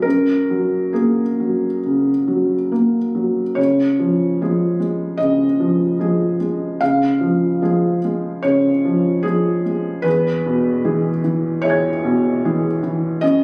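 A felt-muted upright piano plays alone in this short neoclassical minimalist excerpt, its soft, boxy tone sitting up front with an intimate, mellow character that suits the melancholic, wistful mood. The rubato pulse drifts between 67 and 77 BPM in 4/4, moving from an opening F#add9 chord to C# at 3.6 seconds and E at 10.1 seconds, spanning E2 to G#6. The phone-in-the-room capture adds light club reverb and compression.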